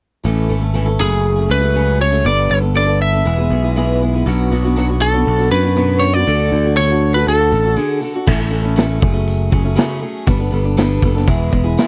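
This dry, close 1970s-style studio recording puts every instrument up front, giving this short folk rock and heartland rock cut a nostalgic, open-road mood at 120 BPM in a straight 4/4 and A major. A boxy, parlour-sized steel-string acoustic guitar with fresh strings picks out the accompaniment, while a bright, growly picked electric bass holds down the low end. At 1.0 seconds a lightly driven lead guitar carries the melody until 8.0 seconds, its tone twangy, compressed and slightly broken-up. After a brief break, a vintage drum kit enters at 8.3 seconds for the closing section, with a punchy kick, a medium-tuned snare, hi-hat, crash and dark cymbals, all saturated and gritty with a rolled-off top. The harmony moves through A, F#madd9, Gadd9, E, Bmadd9 and D before cycling back to A, F#madd9, Gadd9 and E.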